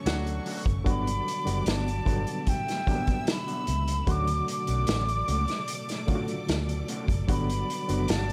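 An airy, distant concert flute carries the melody from 0.9 seconds in this smooth, romantic 1970s-style soul excerpt at 75 BPM in D major, over a punchy vintage drum kit and a round, foam-muted electric bass up front, a barky, lightly overdriven electric piano with fast tremolo, a dark, slightly broken-up electric guitar riff in the background, a bowed, focused violin section on a second line, a very quiet sawtooth string machine holding sustained chords, and clear horn stabs that open the cut in a band accent before stopping at 0.6 seconds, set in a studio reverb as the chords move between Dmaj7 and Gmaj7.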